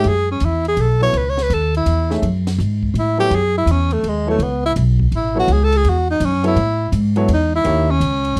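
A breathy, whispered tenor saxophone solo with vibrato and slapback echo leads this hypnotic, spiritual modal jazz excerpt in F# dorian at 166 BPM in a swung 3/4, sitting up front beside a woody, thumpy pizzicato upright bass, while a natural-sounding grand piano accompanies until 7.9 seconds and a dark, compact cocktail drum kit with a high-tuned snare and punchy kick stays in the background, the harmony resting on F#m9 before moving to D#7b9 at 7.6 seconds in a dry, close 1970s-style studio sound.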